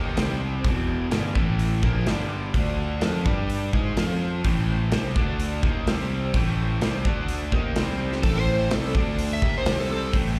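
A straight, driving 4/4 groove in swaggering blues rock and southern rock, carried by a big, up-front drum kit with a boomy kick, medium-tuned snare and hi-hat, while a barky tine electric piano handles the bass line. A crunchy, double-tracked overdriven guitar plays a bright picked riff with spring reverb and slapback echo over chords that shift constantly between power chords and sevenths, as a very quiet, gritty tonewheel organ sustains chords through a slow rotary speaker with key click and percussion. At 8.2 s an overdriven slide guitar with a warm tone and slapback echo takes a short solo, all heard as a live gig through the venue's PA with club reverb in this brief cut from a longer piece.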